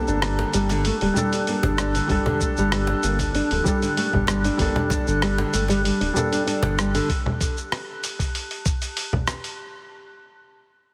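A straight 4/4 groove at 96 BPM in G harmonic minor sets this mystical, hypnotic organic downtempo excerpt on a Gmadd9 chord, where a gritty, up-front sampler-style kit of congas, hi-hat, rim click and shaker meets a woody, hard-handed cajon and a thumpy electronic kick that enters at 2.1 s, while a round analog bass pumps deep beneath thumb-plucked nylon-string guitar arpeggios with delay, a felt-muted upright piano with audible action noise and its own delay, and a warbling, nostalgic tape-like pad with chorus and 12-bit grit that lingers until 9.6 s, all framed in light reverb and a heavily compressed radio sound.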